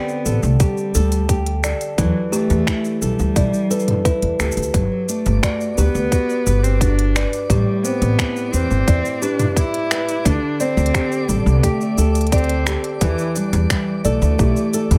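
A thumpy pizzicato upright bass on gut strings sits up front in this pastoral, playful folktronica excerpt at 87 BPM, its tone thickened by tube saturation. A dark, bowed cello carries the melody with vibrato, 12-bit sampler grit and tape echo, while fingerpicked flamenco guitar arpeggios and a mellow, hollow, woody kalimba line with delay play over an overdriven electronic kick and an organic electronic kit of finger snaps, crisp hats, shaker and toms, both re-recorded in a large room. From 5.1 s a twinkling, sparkling granular texture drifts in the background over chords moving from D7sus4 through Em7, Gmaj7 and Am9.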